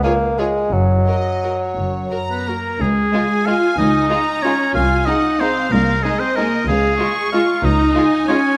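A clear, up-front solo oboe enters at 2.3 s as a second line in this festive, elegant orchestral ballroom waltz in a rubato 3/4, cut from a longer piece, just before an equally clear solo bassoon ends its accompaniment at 2.5 s, while a rich, smooth violin section with vibrato carries the melody above a focused, lush and more distant violin second line and an even viola accompaniment, with warm cello and double bass sections bowing the bass from 0.7 s, inside a moderate concert hall reverb.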